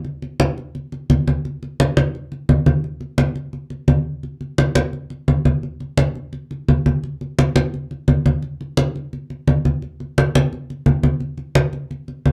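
Sophisticated and sunny, this short jazz fragment moves at a brisk 172 BPM in a straight 4/4 feel. Congas carry the whole passage alone from start to finish, their low-tuned drums sounding bright with a thin-skinned snap. The acoustic hand drums sit up front, close and intimate as if captured in a small room, while a wet club reverb with a brief 0.5-second tail adds a touch of nightspot ambience. The overall production leans dark, framing the crisp conga tone in a dusky setting. Around 7.0 seconds the piece moves into a new section that runs to the cut-off at 12.3 seconds, hinting at a longer performance beyond this snippet.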